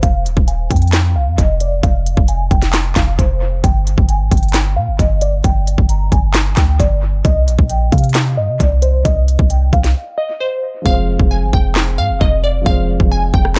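Awash in echo-heavy digital ambience, this eerie, melancholic half-time trap excerpt sets a glassy, detuned wavetable pluck with chorus and a filter sweep over a deep, boomy 808 bass and an up-front trap kit of hard-clipped kick, sharp snare, crisp hats, rim clicks and handclaps, until a break near the 10-second mark brings in a dark, boxy grand piano with audible action noise at 10.8 seconds and mutes the hi-hats from 10.9 seconds.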